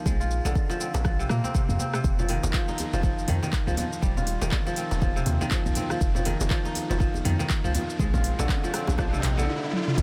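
A fingerpicked, ringing kora opens this hypnotic afro house excerpt with up-front arpeggios bathed in diffuse ambient delay and sidechain pumping, joined at once by a deep, boomy 808-style bass with tube saturation, a deep electronic kick, an afro-pop kit of handclaps, crisp hats, rim click, shaker and toms, and a very quiet djembe, while soft-handed congas arrive at 2.2 seconds and a background riser and impact rise from 7.5 seconds toward a drum fill at 9.7 seconds over light reverb and a swung groove cycling through Bb, F5 and Eb.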